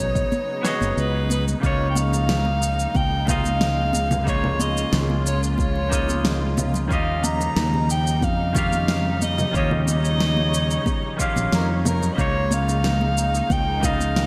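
Sunset chillout at 91 BPM in a straight 4/4, blissful and smooth, set in Db lydian and cut from a longer piece. A clear soprano saxophone carries the melody with vibrato and a soft attack in a classical style, while a twangy, picked clean electric guitar accompanies, both touched with delay. Muted strings hold veiled, con sordino chords underneath, and a punchy fingered electric bass sits up front. An airy, breathy wind-like texture drifts in very quietly for the opening 1.6 seconds over a Cb69 chord before the harmony moves to Db69, then Eb9 at 6.9 seconds, and back to Db69. Layered electronic drums enter at 0.2 seconds, with a deep kick, and a fat snare, shaker and congas treated with gated reverb, while very quiet, close and dry acoustic congas and bongos add hard-handed color. A lush hall reverb and bright 1980s-style digital production give the whole a glossy sheen.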